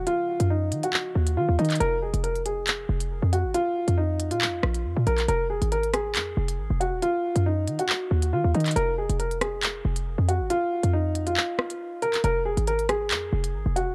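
A half-time drill groove at 138 BPM sets a menacing, dark tone in F phrygian. Crisp hats, handclaps and rim clicks ride up front on an electronic, tape-warm drum kit, with the kick dropping out between 11.4 and 12.2 seconds. A short, punchy 808-style bass with a sine core, a noise layer and a fast attack decays tightly beneath, reaching down to Eb1. An intimate upright piano carries the melody in a narrow range around Eb4 to Bb4, its woody tone and audible action noise softened by a low-pass filter and trailed by analog delay as the chords move through Ebm, Fm and Bb5. A bright, ringing concert harp is fingerpicked very quietly and stops by 0.9 seconds, leaving a dark, warm production with light reverb.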